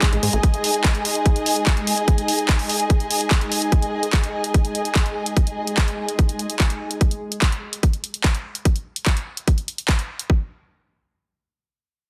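Psychedelic trance with a psychedelic, hypnotic mood, built on a tight, overdriven electronic kick and a layered, up-front big-room dance kit of handclaps and hi-hat. A resonant sawtooth texture with bubbling stepped-filter movement holds sustained chords with chorus and sidechain pumping, beside a dark, woody string section with lush bowed vibrato that also pumps. Both the strings and the synth texture stop at 7.0 seconds, and the drums carry on until about 10.3 seconds, in this dense, heavily limited excerpt cut from a longer piece.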